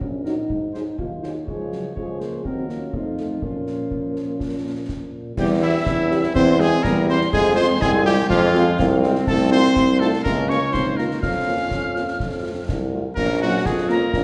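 A clear, softly attacked cornet carries the melody of this resolute, stern military-style march for wind band, over a vintage-toned tuba bass, a mellow euphonium second line, a distant French horn section, and concert bass drum, snare and dark clash cymbals, joined at 5.4 s by an airy piccolo and a smooth-topped trombone section holding sustained chords, with the band heard from further back in a wet scoring-stage reverb.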